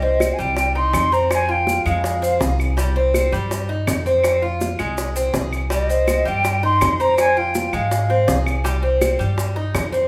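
The recording sounds like a band playing live together in one large studio, with a moderate reverb giving the room some air. This short passage of Cuban son and guajira in C minor moves at a brisk 164 BPM in a straight 4/4, with a sultry, danceable mood as the harmony sways between Cm and Fm. Up front, the picked acoustic tres plays metallic arpeggios on its double strings, some octave-doubled, while a dark, growly pizzicato upright bass with steel strings thumps out the low end. A pure, hollow concert flute, close-miked and tongued with vibrato, carries the melody in two phrases, the first ending at 2.6 seconds and the second beginning at 5.7 seconds. Round, low-tuned bongos played with soft hands sit in a smaller-sounding space, woody claves sound distant in the background, and grainy, mellow maracas come through close and dry.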